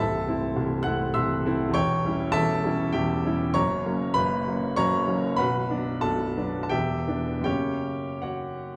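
A clear, intimate baby grand piano opens alone on an Am/C chord, its action noise audible and its long sustain carried up front in a wet recital hall reverb with a dark production. This romantic character piece in 3/4 moves with a bittersweet, stormy rubato through C#dim/E, F#, Bm and Em7 before settling back on F# at 7.5 seconds. The passage is cut from a longer piece and ends at 8.8 seconds.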